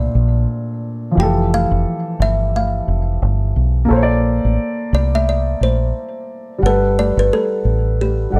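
A deep, round dub bass sits up front and punchy in this mellow, cosy lo-fi hip hop excerpt, its fingered electric tone dark and foam-muted as it holds the low end at 88 BPM in 4/4 with a 59% swing on the 16ths. Above it, a kalimba carries the melody between G4 and G5, its short thumb plucks woody and smooth with a solid-board body and a touch of plate reverb. A dark upright piano supplies the accompaniment, vintage and mellow in character, colored by cassette tape and its own plate reverb. All three parts play throughout the 8.4 seconds, moving through Bbmaj9, Fmaj9, back to Bbmaj9 at 3.9 seconds, and Gmaj9 at 6.6 seconds. The whole mix carries a light reverb and a cassette tape sheen that lend it a mellow, cosy intimacy.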